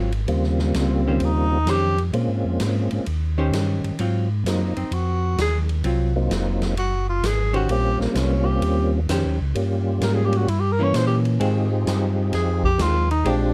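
Soul jazz organ trio music at 130 BPM in a swinging, bluesy 4/4, cut from a longer piece in Eb mixolydian with chords moving from Eb13 through Ab13 to Fm7 under a dark, lightly reverberant production. A breathy, close-miked tenor saxophone solos up front with scooped notes from 0.8 seconds, beside a clear, percussive tonewheel organ melody with key click, chorus vibrato and a slow rotary speaker. Underneath, a mellow, round organ bass turns on its own slow rotary speaker, a dark, picked hollow-body archtop guitar adds clean accompaniment, and a big-band drum kit with a punchy kick, medium-tuned snare, hi-hat and ride sounds natural in a big room.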